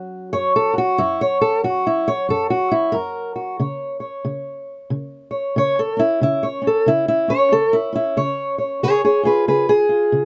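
Swaggering and gritty, this short cut from a longer acoustic country blues piece moves at 92 BPM in a swung 4/4, with a lone fingerpicked old ladder-braced acoustic guitar playing up front for the full 10.2 seconds, its woody, boxy tone and old strings set in light reverb and a dark, warm production as the harmony moves from F#5 to C# at 3.6 seconds.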